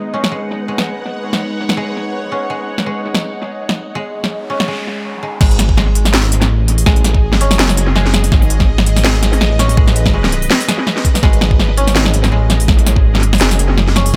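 An echo-heavy mix with light reverb carries this cinematic, heavy slice of half-time drum and bass at 165 BPM in G# phrygian, opening on a tense, bright bowed-like drone of sustained chords with phaser, vibrato and sidechain pumping, a dry, woody koto picking arpeggios through dub echo, a grainy, flickering texture in the background, and an up-front kit of cracking snare, crisp hats and crash run through analog delay. A noise sweep enters at 4.4 seconds and carries into a short break. At 5.4 seconds the drop lands with a knocking electronic kick and a deep, rumbling, saturated detuned saw bass that sits up front beneath the swung 16ths.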